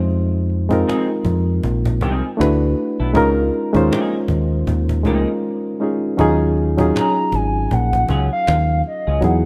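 A barky, reedy electric piano with a touch of overdrive opens this sultry neo-soul excerpt alongside a deep, round fingered electric bass that sits up front, setting a slow, swung 79 BPM groove in Eb dorian. A compressed, woody cajon with faint snares joins at 0.1 seconds, and a clean, hollow-body electric guitar slips in quietly at 0.9 seconds with a subtle chorus, playing a soft second line. The harmony moves through Fm7, D69 and Db69, with a brief break from 5.4 to 6.2 seconds before settling onto Ebm11. At 7.0 seconds a mellow, clarinet-like synth lead enters high in the mix, its soft attack, vibrato and chorus giving the soulful melody a hollow, sustained quality. Light digital reverb and a rough home-demo character leave the sound intimate and slightly unpolished.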